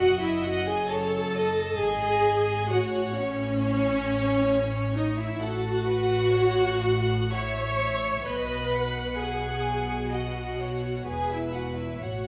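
Bathed in the wet reverb of a scoring stage, this serene, tender excerpt of a slow romantic string orchestra movement drifts at 65 BPM in a rubato 3/4 over F-sharp minor harmony. A pure, floating violin section carries the melody while a clear second violin line glows beneath it. An up-front viola section, dark and woody with vibrato, sits out in front, and rich cellos and warm double basses anchor the bass, every section bowed sul tasto for 12.3 seconds.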